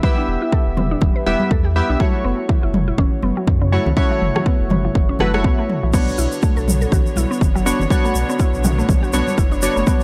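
Spiritual and warm, this afro house excerpt rides a punchy, overdriven electronic kick up front, with a background house kit adding crash, rim clicks and toms, ringing soft-hand congas, a deep round sine sub bass entering at 0.3 s, a woody FM mallet-like pluck playing chorused, tape-echoed arpeggios, and detuned analog key stabs that pump with the sidechain through Em and F#m7 before a clear, biting bowed string section and a grainy egg shaker join at 5.9 s on Bmadd9, all in a dry, gritty hardware sound with digital ambience.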